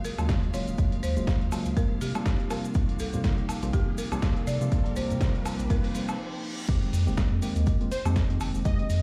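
A punchy, layered electronic kick sits up front in this deep, smooth deep house excerpt at 122 BPM in F minor, joined by a round analog bass with sidechain pumping, a gritty, overdriven soul-sampler drum kit with woodblock and crash, and a faint grainy cabasa. A woody folk marimba carries the melody with delay over a warbling, nostalgic pad, hollow organ stabs with dub echo, and a very quiet bowed violin section, while a riser and reverse cymbal build to a brief break at 6.2 seconds. The drop lands at 6.7 seconds on Fm11, and a bright, detuned plucky unison lead with phaser and cassette-tape color enters at 7.9 seconds, all set in stone-room reverb with vinyl crackle.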